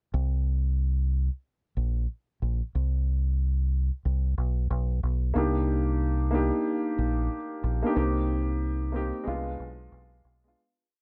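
A swung boom-bap hip-hop groove at 92 BPM in 4/4 sets a reflective, tough mood across this short piece, which runs as a single verse. A deep, round fingered electric bass opens at 0.1 seconds, playing a punchy, looped line that sits up front and stays low in its register. The dark concert grand piano joins at 5.3 seconds with mellow, rootless voicings and pushed chord rhythms, repeated like a sampled loop and filtered through a cassette tape character. The harmony moves from Bbsus2 through a bare passage to Cm9, Cm7 and finally Bdim7. Studio reverb and a worn, warbling tape quality with drifting pitch give the recording a dusty, aged feel before it fades out from 8.0 seconds to the end.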